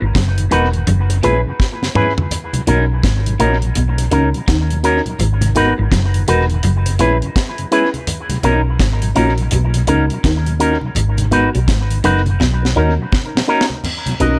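A round, dark, foam-muted fingered bass sits up front in this tender, romantic lovers rock reggae excerpt at 83 BPM in B major with a swung 16th feel, joined up front by a dry deep reggae kit with a high-tuned snare, tight kick and dub echo (fills at 1.6 and 12.4 seconds) and a bright, twangy envelope-filtered guitar stabbing through dub echo, while a soft FM electric piano with chorus and phaser and a flute-like tonewheel organ on slow rotary speaker sit in the background, and a very quiet, slightly broken-up guitar riff through a small old amp and thin-skinned, low-tuned congas add detail in a close, dry mix.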